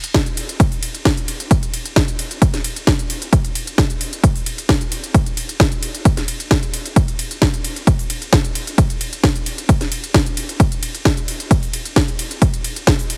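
Opening on an overdriven techno drum kit of smooth hi-hats, ride cymbal and a cracking snare, joined at 0.1 seconds by a heavy, up-front electronic kick, this dark, driving techno excerpt is a straight 4/4 drum workout with a dry, heavily compressed, radio-like sound.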